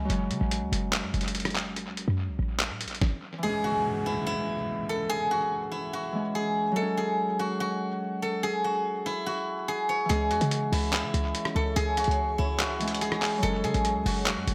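Hip hop in a trap style with a half-time feel, this excerpt carries a menacing, melancholic mood, cut from a longer piece. A bright, fingerpicked Celtic harp plays accompaniment throughout with tape echo, opening over a punchy, tight 808-style bass and a muffled, pitched-down sampler drum kit with a thumpy kick, handclaps, hi-hat, rim click and snare, both up front. The beat drops out just after 3 seconds, and at 3.4 seconds a silvery steel-string zither, played with fingerpicks and ringing, takes the melody with tape echo, while an electronic downlifter sweeps beneath it. The drums and bass return at 10.1 seconds, and at 11.4 seconds a very quiet, ethereal pad of detuned, chorused sustained chords rises in behind them. The harmony moves between F#sus2 and C#m, and a moderate echo-chamber reverb gives the mix an echo-heavy, lo-fi atmosphere.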